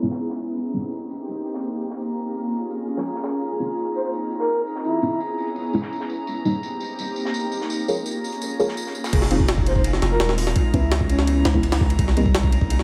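Dark, atmospheric drum and bass in a jungle vein, this excerpt opens with an ethereal, airy pad, detuned chord stabs treated with phaser and dub echo, a drifting glass-harmonics texture and a dark, crunchy small-room breakbeat kit under a filter sweep, while a breathy, flute-like lead with vibrato floats in at 4.0 s, until the drop at 9.1 s brings in a gritty, compressed sampler-style jungle kit with a thumpy kick, up front in a large room, alongside a deep, tube-saturated 808-style sine bass.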